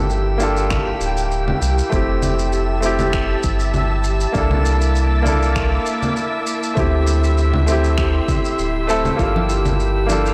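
Set at 99 BPM in 4/4 with a light swing on the sixteenths, this relaxed sunset chillout fragment in G dorian rides on an electronic kick drum that enters at 0.7 s, deep and tape-warm, alongside a gritty, sampler-style kit of electronic shaker, finger snaps and congas, with soft clipping on the snare. A round sine sub bass sits up front beneath a clear, polished baby grand piano whose accompaniment carries vintage 12-bit sampler grit and tape echo. A silky string machine holds soft, slowly blooming chords with ensemble chorus, while a glassy texture of drifting harmonics floats in the background with chorus and its own reverb. The chords move from Gm7 through Fmaj9, C13 and D9sus4 before returning to Gm7 at 9.2 s, where a fingerpicked concert harp adds ringing arpeggios with tape echo, and moments later close, dry acoustic congas join in the background. The whole mix sits in a lush hall reverb yet sounds blown-out and overdriven, giving the calm mood a saturated edge.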